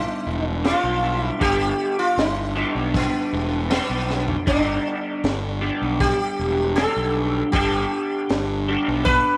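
A straight 4/4 pulse at 78 BPM carries this hypnotic, trippy psychedelic rock excerpt in G major, opening with a buzzing, shimmering sitar melody treated with tape echo alongside a twangy, slightly broken-up guitar riff through a small old amp and rotary speaker, joined at 0.3 seconds by fingered electric bass thick with fuzz and overdrive and at 0.6 seconds by a crunchy, gritty breakbeat kit with a punchy kick and high-tuned snare that rolls into a drum fill at 4.1 seconds, the whole set in light reverb and studio ambience.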